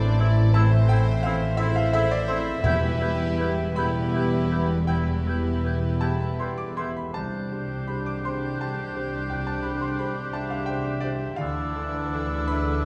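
Sorrowful and longing, this cinematic passage, cut from a longer piece, drifts in a rubato 6/8 at about 52-58 BPM over Am, Em, Csus2 and Dmadd9 harmonies, with a soft-attack, sul tasto violin section floating the melody while a close-miked clarinet, a distant second violin section, an airy concert flute and a solo cor anglais weave second lines. Beneath them a clear, vintage-toned grand piano with short sustain, a pure viola section, a mellow French horn section holding chords and a very quiet, ringing thumb-plucked harp supply the accompaniment, anchored by intimate cello and double bass sections with light vibrato. Soft-mallet timpani add a round, hushed touch from 2.6 to 3.7 seconds, and everything sits in a recital hall reverb with a 1.5-second decay.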